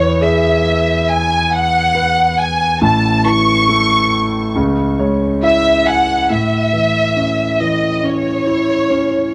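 A lush, vibrato-rich violin section carries the longing melody of this emotional pop excerpt with a cassette-tape tint, over a concert grand piano whose deep, open bass anchors the harmony from E through A and C#m, adding a fill from 4.6 to 6.3 seconds before the music moves into a new section, all set in a moderate studio reverb.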